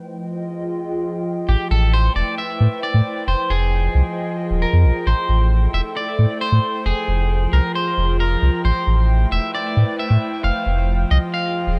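Melancholic and intricate, this IDM excerpt moves at 134 BPM in a straight 4/4, cut from a longer piece. A warbling, detuned, lo-fi pad opens alone, holding dark, nostalgic sustained chords with a slow attack, long release, chorus and its own built-in reverb, alternating between Fm7 and Am7. At 1.5 seconds a deep, round sine sub bass arrives up front, mellow and sustained with tube saturation and a fast attack. A twangy, fingered electric guitar at the edge of break-up enters at the same moment to carry the melody between G4 and F5, sitting forward and trailed by dub echo. The mix is echo-heavy, with light reverb and a digital ambience around the parts.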